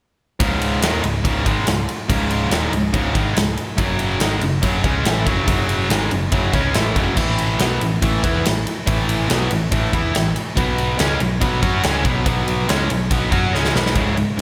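A big arena sound with lush hall reverb frames this heavy, aggressive hard rock excerpt in C# minor at 142 BPM, a straight 4/4 cut from a longer piece that moves through C#5, F#5, A5 and B5 power chords. Two bright, picked electric guitars play the riff together, one distorted and the other overdriven with spring reverb and slapback echo, while a dark, round hollow-body short-scale bass sits beneath them. A punchy, up-front acoustic drum kit with a medium-tuned snare, kick and bright crash and ride cymbals drives the groove and closes with a fill at 13.5 seconds.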